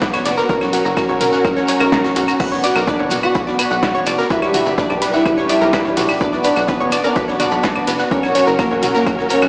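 Melodic techno at 126 BPM in B harmonic minor, hypnotic and driving, where dark, woody strings, a round analog pluck arpeggio with dub echo, brassy pad stabs and a tight sequencer bass pump against the kick from the start alongside a tape-warm electronic kick, a punchy analog drum machine, a distant soul kit with pumping hats and a grainy shekere, joined at 2.4 seconds by a smooth portamento lead and a glassy wavetable pluck over an F#, Bm, G6 chord cycle, all set in a lush hall reverb that sounds as if played on a big sound system in a bare stone room, in a short cut from a longer piece.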